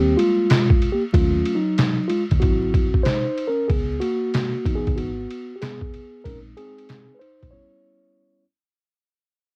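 A swung 94 BPM groove in 4/4 drives this short, smooth jazz-hop cut from a longer hip hop piece, its cassette-tape drum kit gritty, compressed and pitched down, with a thumpy kick, medium-tuned snare, hi-hat and ride sitting up front. A mellow, clean tine electric piano, also run through cassette tape, carries the solo over lush chords from Abmaj7 through Dbm9 and Bb9sus4, while a deep, round, punchy fingered dub bass holds the low end until drums and bass drop out at 7.5 seconds, leaving the piano alone to land on Em6/G. Light reverb, vinyl crackle and a home-cassette sound give it a warm, lo-fi haze as the whole passage fades out.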